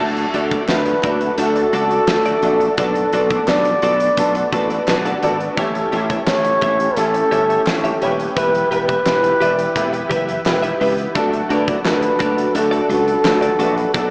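A clear baby grand piano, a vintage, organ-like string ensemble with phaser and chorus, a bright, compressed clean electric guitar riff with analog chorus and delay, and a glassy, punchy slap bass open this glossy, uplifting 1980s-style pop excerpt, soon joined by a huge arena drum kit with a fat snare, a barely audible group handclap and an up-front, breathy flugelhorn melody with scooped notes and delay, while the piano adds fills at 4.2 and 9.8 seconds and a plate reverb soaks the dreamy mix in a small-speaker sound.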